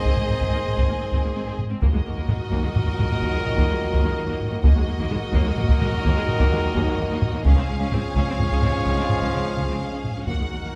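Rolling in 12/8 at 85 dotted-quarter beats per minute with a straight feel, this short cut from a longer cinematic orchestral score drives forward in Eb dorian with a dramatic, relentless mood. A taiko ensemble struck with heavy sticks sits prominently in the mix, while a violin section carries the lush, focused melody high above, and a second violin section with a soft attack and expressive vibrato plays a line beneath it. Violas, clear yet distant, and a rich, even cello section fill out the background, supported by a very quiet, expressive double bass section. Brass adds weight: a mellow, roomy French horn section and a warm, distant trombone section hold sustained chords, while a solo trumpet cuts through with clean, soft-edged stabs. The harmony moves from Ab to Ebm at 1.8 seconds and settles on Db at 7.5 seconds, all set in the generous reverb of a concert hall or church.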